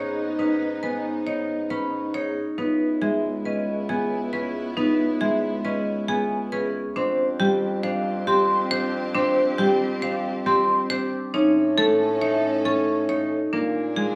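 From the first moment, a ringing, band-limited vibraphone with medium hard mallets carries the melody over bright, woody marimba arpeggios struck with hard mallets, up-front fingerpicked concert harp accompaniment, soft-attack sustained chords from an intimate chamber string section and a distant, roomy bassoon bass, together forming a hypnotic, meditative minimalist classical pattern piece in 5/4 at 137 BPM that moves from G#m through C#m7, Fsus2 and A to A#7 within a moderate large-studio reverb.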